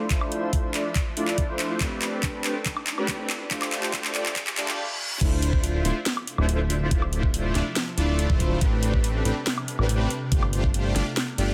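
Future bass in D dorian at 141 BPM with a half-time feel, this lush, dreamy excerpt opens on a build-up where a smooth, detuned supersaw riff sits up front under a filter sweep, its pumping sidechain and digital delay set against a very quiet, shimmering pad of sustained chords with an ethereal octave-up glow and warbling, granular chorus. A knocking electronic kick and a trap kit with a sharp snare, metallic hats, handclaps, woodblock and crash carry a drum fill through the opening, while a faint riser and reverse cymbal lead into the drop at 5.2 seconds. There a fat, thick analog bass enters up front, its detuned sawtooth tone pumping with sidechain as the Dm9, Am11 and G9sus4 progression cycles again. A moderate room reverb surrounds the parts, and the dense, heavily limited master keeps the sound full and polished.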